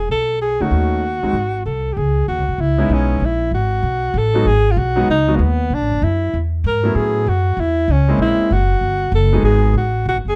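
Small-group swing and bop jazz at a brisk 193 BPM with a sophisticated glow, as a clear, up-front alto saxophone sings the melody with vibrato and a soft attack over a thumpy, woody pizzicato upright bass, while a grand piano enters at 0.6 seconds to comp through rich changes such as C#m9, F#9 and A#m7b5, all wrapped in light reverb and a dark, warm production in this short cut from a longer piece.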